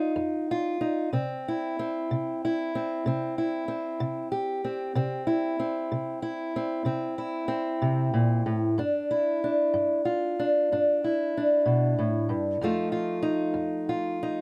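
Dry and closely miked, this rollicking, soulful blues fragment in a slow 12/8 features a single fingerpicked old ladder-braced acoustic guitar, dark, woody and boxy with old strings, sitting up front as it plays alone through the full 14.4 seconds, moving from an opening Ebsus2/F to C before reaching G7(no3) at 8.8 seconds and F7 at 12.6 seconds.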